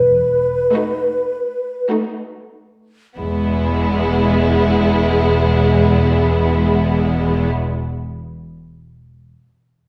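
In a slow, rubato 3/4 at roughly 44-57 BPM, this classical excerpt is cut from a longer piece and moves with a yearning, elegiac mood, slowing down through its first 3.2 seconds before a second section arrives. A hollow, airy flute ensemble sits up front as a second line from the start, over a low E from a rich cello section and a double bass section with soft attacks. At 0.7 seconds the upper strings join: a lush, expressive violin section carries the melody, a second, more focused violin section plays a second line below it, and a smooth, even viola section fills in the accompaniment. The harmony rests on B7 over an E bass before settling onto E at 3.2 seconds. All the strings play bowed with vibrato, and the whole ensemble is heard from further back in a scoring stage, bathed in a reverb of about 1.4 seconds.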